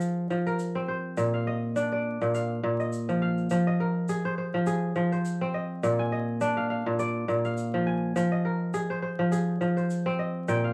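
Reflective and flowing, this short piece of West African traditional string music moves at 103 BPM in 4/4 with a lightly swung sixteenth feel, centred on F dorian and alternating between Fm and Bb. Mellow, ringing kora arpeggios sit up front, fingerpicked and crisp across a range from Bb2 to Ab5, closing with a brief fill at 10.5 seconds, while a grainy, bright tube shaker sits close and dry in the background. The studio ambience is reverberant, and a layer of vinyl crackle adds an aged patina to this section cut from a longer performance.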